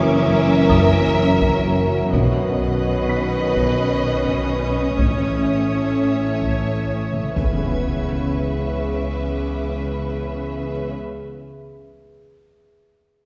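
A buzzing, woody marimba riff underpins this uneasy, mysterious suspense cue at 63 BPM in 3/4 and C# minor, cut from a longer piece, set against bowed strings in which a distant, expressive violin melody rides over a smooth second violin line, a lush viola part, and cello and double bass holding the low end, while a high violin texture with portamento shimmers in the background. Glassy, ethereal glass harmonica, mellow French horns and a trombone section sustain chords moving from F#7 through Badd9 and A to C#m7, with a very quiet felt-muted upright piano adding a dark, intimate glint and background taiko entering at 0.7 seconds. A taiko fill leads to a huge, bright impact at 7.8 seconds that opens the closing section, all bathed in the reverb of a concert hall heard from further back.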